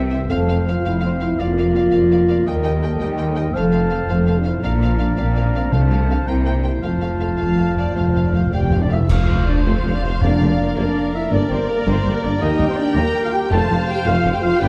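A rolling 12/8 pulse at 109 BPM carries this triumphant, adventurous film-score passage in F major, where lush bowed violins sing the melody over rich cellos and double basses, mellow French horns and very quiet trombones hold sustained chords, and distant violas, an airy flute, a roomy oboe, a clear clarinet and a second violin line fill in the harmony. Round, soft-mallet timpani tap in at the start and return at 5.7 seconds, building a fill from 6.8 seconds that leads into a band accent at 9.1 seconds, where dark cymbals and bass drum crash, a bright trumpet adds stabs and a mellow tuba joins the low end. The sound is dark and warm with a moderate scoring-stage reverb and faint lossy compression artefacts, and the clip is cut from a longer piece.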